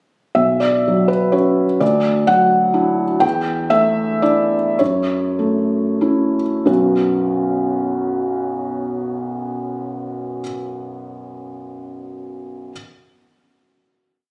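In a rubato 3/4 that drifts between 91 and 129 BPM, this short neoclassical minimalist piano piece unfolds in B minor with a melancholic, wistful air. A felt-muted upright piano plays alone from start to finish, spanning B1 to G5 with a single-line melody over sparse bass and held chords. Its tone is soft and intimate, sitting up front with the audible action noise of the instrument adding a natural closeness. The harmony moves through Bmadd9, Dadd9, A7sus4/E and F#m7, the pace slowing down from 2.5 seconds until the piece settles on a final Bsus2 chord at 6.7 seconds that rings to the close. Captured on a phone in the room, the sound carries light reverb and compression.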